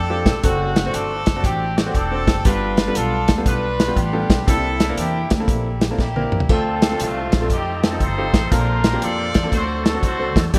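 Reverent and soulful, this uptempo gospel passage swings at 119 BPM in 4/4, cut from a longer piece and set in a lush hall with a bright 1980s-style digital sheen. A horn section carries the melody from the start, its light vibrato and roomy, distant tone touched by a digital delay, while a pizzicato upright bass with woody gut strings thumps underneath. A clear concert grand piano with deep, natural bass fills in the accompaniment, and an up-front soul drum kit, dry and dark with a punchy kick and smooth snare, comes in at 0.3 seconds. After a drum fill at 6.0 seconds, a gritty, overdriven tonewheel organ enters in the background at 6.5 seconds with thick sustained chords, key click and a slow rotary speaker. The harmony moves through rich seventh and ninth chords such as D7/F#, C9, Dm7 and Bbmaj9 before settling on D7.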